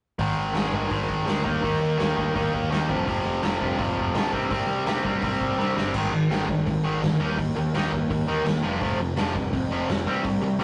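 A rough, tube-saturated rehearsal-room recording, with nothing above 11.0 kHz and wrapped in a short, wet booth ambience, catches this energetic, rebellious punk rock fragment at 167 BPM, where a sludgy, double-tracked overdriven guitar sits up front grinding through Ab5, Eb5, F5 and C5, a growly fuzz bass drives underneath, and a gritty garage drum kit with a punchy kick and medium-tuned snare leads into the second section with a fill at 5.6 s.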